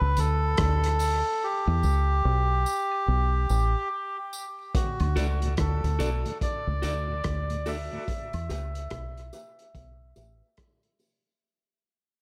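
A laid-back 72 BPM dub reggae groove with a 16th-note swing opens on bass, organ and melodica, with a muffled vintage drum kit of hi-hat, punchy kick and rim click joining at 0.2 seconds, while a dark, round, foam-muted fingered bass sits up front, a reedy, breathy melodica carries the melody through dub echo, a mellow tonewheel organ with slow rotary speaker and key click hums in the background until 8.0 seconds, tambourine and woodblock add light texture, and a slightly broken-up picked electric guitar with tremolo enters at 5.2 seconds as the spacious, echo-heavy mix moves from D to Em under a filter sweep and fade-out in this excerpt.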